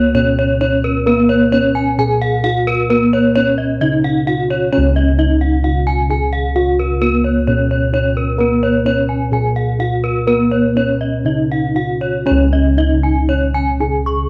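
Balinese gamelan in Db slendro, a brilliant, shimmering excerpt from a longer piece moving in a straight 4/4 at 117-131 BPM. A bronze metallophone struck with padded disc mallets carries the melody in a mellow, soft tone with a boxy small-room character, while a second, up-front metallophone played with a horn mallet spins airy, bright arpeggios above it, both tuned in pairs so their notes pulse with beating shimmer. Round, up-front bossed gongs anchor the bass under a moderate echo-chamber reverb, and the music shifts into a new section at 12.3 seconds before the cut at 14.3 seconds.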